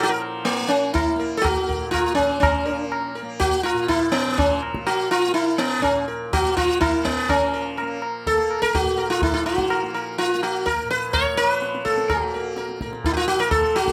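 Lightly reverberant, this Hindustani classical piece in raga todi sets a buzzing, up-front sitar melody over a softly plucked, shimmering tanpura drone, with low-tuned, short-ringing tabla entering at 0.2 seconds. The mood is introspective and solemn, moving in a straight five-beat metre that gradually speeds up. A second section begins at 7.3 seconds, with the sitar's sympathetic strings ringing out around its round, plucked tone.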